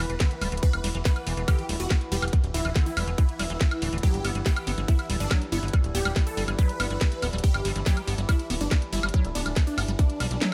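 A digital ambience and a tight, up-front electronic kick frame this hypnotic psychedelic trance excerpt, where a punchy, funky plucky analog bass and a detuned supersaw stab melody, treated with phaser, delay and sidechain pumping, drive the straight 4/4 groove over a G5 chord. Behind them, a squelchy liquid acid bass riff with chorus and delay, a resonant overtone-sweeping drone holding sustained chords, and a deep, moody ambient pad with slow attack and long release sit in the background, all three pumping to the kick. A layered garage drum kit adds a cracking snare, hi-hat, ride cymbal, toms and woodblock, re-recorded in a small room.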